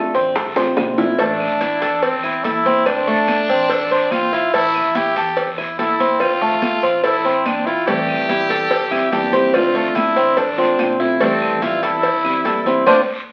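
Opening on up-front, metallic Cuban tres arpeggios over a bright, fingerpicked steel-string guitar and a dark, thumpy upright bass in the background, this sultry, nostalgic Cuban son and guajira excerpt in A minor at 144 BPM brings in background congas, tight bongos and cowbell, a very quiet raspy guiro and woody claves; after a drum fill, a brilliant, gritty growling trumpet enters up front at 1.2 seconds as the guitar drops out, returning at 7.9 seconds, and the music, set in wet studio reverb with the crackle of a very old 78 rpm record, ends on a band accent at 12.9 seconds.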